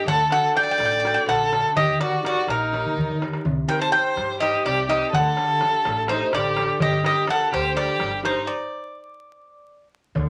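A metallic, double-stringed Greek bouzouki carries the melody up front from the start, joined by a rich, smooth bowed violin with vibrato on a second line and a full-bodied fingerpicked steel-string guitar, while a woody pizzicato upright bass and a crisp metal-shelled darbuka enter just after. This dramatic, tense Greek folk excerpt moves at 250 BPM in 7/8 in D phrygian dominant, passing from D through Eb, Cm and Dsus4 to Gm, with a darbuka fill at 2.8 seconds. A small, wet room and a layer of vinyl crackle surround the band, and at a stop at 8.5 seconds the violin falls away and the chords give way to an unharmonised close.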